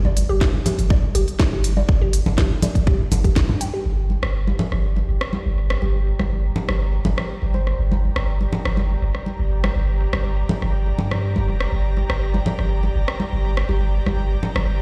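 A punchy, deep sub bass with a pitch-drop attack drives this hypnotic, quirky minimal techno excerpt at 122 BPM in G minor, pumping against the beat alongside tape-warm electronic congas and rim click, with a tight kick and a garage kit's cracking snare and crisp hats only in the opening 3.7 seconds. A hollow, nasal square pluck with chorus and delay bounces over the start, then an airy, breathy pad enters at 4.1 seconds, and a round, keys-like FM lead with vibrato and tape echo sits in the background from 5.8 seconds. The whole is heard through light stone-room reverb, as if played on a big sound system in a bare room.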